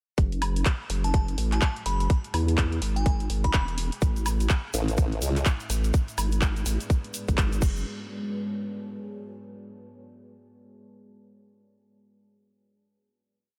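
A nasal, resonant vowel-sweep wobble bass anchors this bouncy, swaggering bass house piece, sitting up front with chorus, tube saturation and sidechain pumping as its modulated phrases shift wobble speed through the whole drop. A tight, layered electronic kick drives a four-on-the-floor pulse, while an overdriven big-room kit adds closed and half-open hats, handclaps on the backbeat, a high woodblock and crash, all with a swung sixteenth feel. Beneath them, a deep, moody sawtooth pad with a sub octave, a moving notch and long release holds dark sustained chords, pumping against the kick. A crystalline FM synth bell warbles through short answering phrases with tremolo and analog delay from 1.0 to 3.6 s. A grainy shaker enters at 4.0 s with hand-played sixteenths in the background, and a pulse-wave formant-sweep wobble bass briefly answers the main bass around 4.7 s before the drop gives way to a final hit at 7.9 s.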